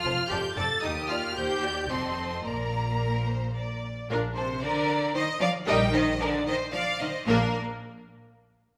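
Bathed in a wet scoring-stage reverb, this brief cut from a quick, cheerful and graceful classical-period movement in 3/4 sets an up-front violin section on the melody over a second violin line, with a viola section carrying the accompaniment and a close cello section joining the double basses on the bass, every section bowed with smooth, rich vibrato.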